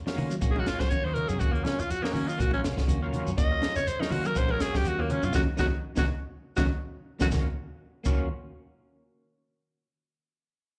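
A defiant, driving afrobeat groove at 122 BPM in Eb dorian opens on Ebm7 as a dry compact cocktail kit with a punchy kick and high-tuned snare, very quiet soft-handed congas, a clean picked hollow-body guitar playing arpeggios and a gritty, overdriven tonewheel organ with slow rotary and key click in the background start together, quickly joined by a second semi-hollow guitar on stabs, a round, foam-muted fingered bass and a grainy shekere, before a raspy, forceful alto saxophone takes an up-front solo from 0.5 s, with a band accent from 5.4 s and an organ fill at 6.3 s, heard live through a venue PA with small-room club reverb.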